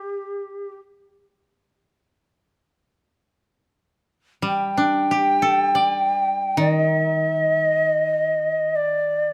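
Japanese traditional chamber music in free time, solitary and meditative, this brief excerpt opens with a breathy, end-blown bamboo shakuhachi carrying the melody alone, its vibrato and tongued chiff sitting up front, before a dry, woody koto played with fingerpicks enters at 4.4 seconds as quieter accompaniment, all captured with close, detailed microphones in a moderate recital hall reverb.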